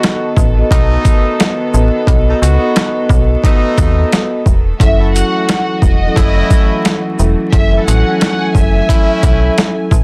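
Boom-bap hip-hop at 88 BPM with a swung 16th feel in F# dorian, reflective and moody, built on gritty, overdriven sampler-style drums with a thumpy kick sitting up front, a digital FM bass entering at 0.4 seconds, mellow soft-mallet vibraphone with a cassette-tape tint, warm horn-section stabs trailed by tape echo, a reedy gut-string studio string section holding chords in the background, and a lush, vibrato-rich symphonic violin melody arriving at 4.8 seconds as the harmony moves from B7 to F#m7, set in a dense, heavily limited master with vinyl crackle and a faint mains hum.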